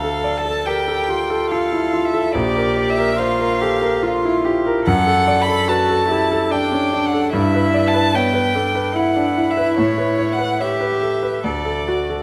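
A rich, up-front violin carries the melody of this slow romantic movement for piano trio in 3/4 at 72 BPM, played with rubato. Its light vibrato, soft attack and airy sul tasto bowing give it a serene, tender and intimate voice. Beneath it, a pure, nasal cello floats through a second line, also bowed sul tasto with a gentle onset, while a clear concert grand piano with deep bass supplies the accompaniment; the harmony moves from D minor and B-flat into D major from 4.9 s, arriving on A9 and then D at 11.4 s, all within a moderate recital hall reverb in a passage cut from a longer piece.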